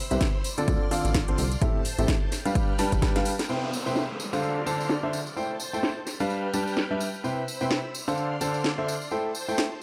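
A swung 128 BPM piano house groove in 4/4 opens with a punchy, tape-warm kick and a plucky, funky analog bass pumping under a clear, up-front concert grand riff over Dm7, Am7 and G7, with cracking snare, metallic overdriven hats and a close, dry tambourine, until kick and bass drop out around 3.1 seconds, a filter sweep takes hold of the drums from 3.5 seconds and an electronic downlifter falls through to 7.2 seconds while shimmering, chorused vintage string-machine violins hold euphoric, uplifting chords in the background, all in a dry, gritty hardware sound with light digital ambience.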